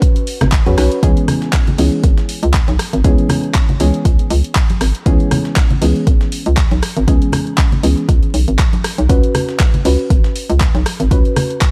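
Deep house with a late-night mood, this short, dry excerpt laid over vinyl crackle pairs a mellow, nasal chord stab, pumping and chorused with tape and analog delay colour, against a hollow, bouncy FM bass that enters at 0.4 seconds, while a deep, up-front electronic kick, a small-room house kit of handclaps, hi-hat and rim click, a very quiet, gritty breakbeat-style sampled kit of hi-hat and snare, and bright, close congas drive the swung groove.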